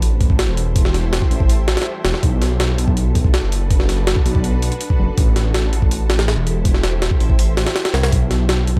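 A dry, close mix carries this dark, atmospheric drum and bass cut at 163 BPM, its harmony moving between Am7 and Bm7. A gritty, compressed jungle sampler kit, re-recorded in a large room, pushes forward with a thumpy kick, a pitched-up high-tuned snare and hi-hat, beside a deep, rumbling detuned saw bass whose beating unison voices are thickened by tube saturation. Behind them, a mellow granular pad holds blurred, cloudy chords that slowly evolve within their own reverb.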